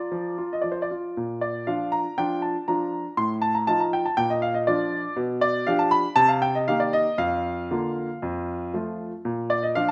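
A clear, present grand piano opens alone and up front, playing a graceful, elegant classical-period sonatina in Bb major at 118 BPM in 4/4, shaped with a gentle rubato across a range from F2 to C6. After a brief opening phrase, a new section begins at 1.2 seconds, moving through chords such as F7/A, G7/B and Cm7 before settling on F and returning home to Bb at 9.2 seconds. A moderate large-studio reverb lends the piano a sense of space in this short passage cut from a longer piece.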